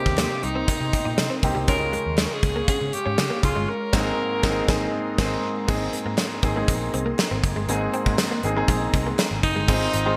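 A straight, steady 4/4 pulse from a punchy, gated 1980s drum kit with bright cymbals drives this nostalgic, moody pop excerpt, supported by a round, foam-muted electric bass, a clear baby grand piano, a clean, chorused electric guitar riff tucked in the background, and faint crisp handclaps. Over a glassy, warbling FM pad, a bright alto saxophone sings the melody up front with light vibrato, scooped notes and digital delay, falling silent at 5.2 seconds and returning at 9.4 seconds, while the band hits a shared accent from 3.7 seconds. A barely audible crunchy overdriven guitar slips in at the very end, all within a bright 1980s-style digital production with moderate plate reverb.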